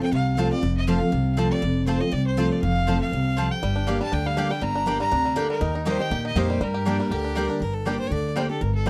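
Bluegrass in G minor at a racing 241 BPM with a light swing, rustic and lonesome in mood, this dry, close 1970s-style studio excerpt from a longer piece sets a biting, nasal fiddle melody over a bright, full-bodied picked dreadnought guitar, a thumpy, woody gut-string upright bass and bright double-string mandolin stabs, while a twangy fingerpicked banjo joins the melody at 3.6 seconds, a second earthy fiddle line slips in at 6.9 seconds, and the lead fiddle takes a solo from 7.6 seconds.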